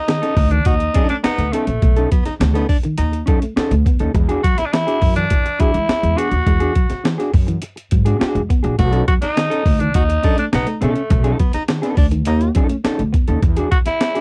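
Strutting and funky, this short cut from a longer piece rides a straight 103 BPM groove in B mixolydian, moving between B9 and E9 chords. A breathy, raspy tenor saxophone carries the melody up front from start to finish, with a smooth-topped baritone saxophone adding a vibrato-laced second line from 0.0 to 3.2 seconds and again from 8.8 to 12.5 seconds. Beneath them, a dark, clean electric guitar plays fingered accompaniment while a hollow-body semi-hollow electric guitar, bathed in lush chorus, repeats a low riff until 13.3 seconds. A compressed, gritty breakbeat sampler-style drum kit sits forward with a thumpy kick, medium-tuned snare and hi-hat, and a woody pizzicato upright bass holds down the bottom end. The sound is a dry home cassette recording, with tape coloring the horns, guitars and drums.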